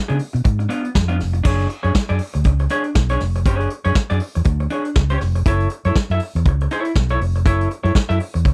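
A dry, close 1970s-style studio sound frames this glamorous, driving disco excerpt at 120 BPM, with a gentle swing on the sixteenths. A vintage brush drum kit sits up front with a punchy kick, medium-tuned snare and dark, rolled-off cymbals, while a round, amped fingered electric bass plays alongside it from 0.1 to 8.5 seconds. A compressed electric guitar, dark and slightly broken-up, fills in the accompaniment over rootless C#7b9 and E13 chords that settle onto F#m7 at 5.5 seconds.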